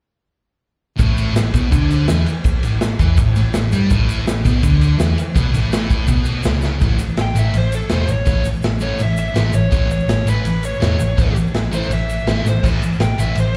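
Garage rock with a raw, swaggering strut, heard live through a club PA, where a bright, double-tracked fuzz guitar riff rides over a round, hollow-body picked bass and a punchy, gritty drum kit with crash and ride cymbals, a grainy egg shaker sits in the background, and a dark fuzz lead guitar with slapback echo enters at 7.2 seconds after a drum fill.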